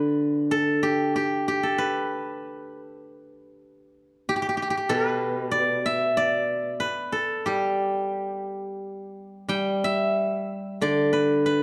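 The recording has a dark, warm production set in a moderate scoring-stage reverb whose 1.9-second tail gives the notes room to hang in the air. This serene, pastoral piece of Chinese traditional music is a short cut from a longer work, lasting 11.6 seconds. A steel-string zither plays alone throughout, placed up front and played with fingerpicks, its acoustic tone bright, silvery and ringing. The line moves freely in rubato around a pulse of 93 BPM in 4/4, set in the G gong mode and spanning B2 to G5. The effect is of an unhurried solo meditation, the plucked strings shimmering against the shadowed room sound.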